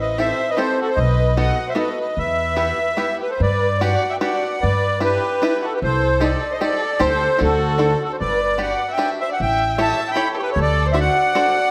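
Set in a wet scoring-stage reverb, this brief cut from a longer nostalgic, whirling musette waltz moves in a rubato 3/4 at 151 BPM, beginning in E harmonic minor before turning to G major at 3.4 seconds. A reedy, sweet accordion with light tremolo tuning carries the melody close and up front, while a single bowed violin adds a dark, expressive second line with vibrato and portamento. Beneath them, a woody, thumpy pizzicato upright bass on gut strings anchors the low end, and a bright, twangy fingerpicked bluegrass banjo joins at 0.2 seconds with percussive accompaniment.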